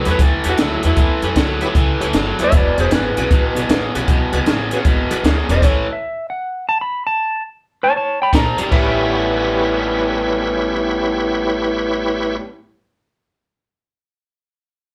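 A twangy lap steel carries the melody over a bright, overdriven garage-guitar riff in this soulful, rollicking electric blues shuffle, with a shouting tonewheel organ on slow rotary and a woody upright bass filling out a band playing live in one room. A compact cocktail kit with a punchy kick and high-tuned snare drives the swing until the band stops at 5.6 seconds, leaving the lap steel's slide and volume swells alone. The guitar and bass return at 8.3 seconds and the organ follows at 8.6, while the drums come back only for a brief hit.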